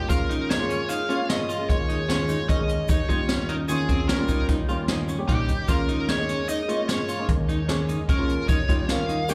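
Heard through a club PA with roomy reverb, this brooding, intricate progressive instrumental moves at 150 BPM in 7/4, with a smooth overdriven lead guitar carrying the melody over a ringing, metallic vibraphone second line, a mellow, short-sustained grand piano, a woody pizzicato upright bass, a dark clean electric guitar picking vibrato-tinged arpeggios from 0.1 seconds, a brushed drum kit with a high-tuned snare and boomy kick, and a grainy, distant tube shaker, while slapback echo touches the lead guitar, vibraphone, piano and clean guitar as the harmony shifts between Eb7sus4 and Eb7.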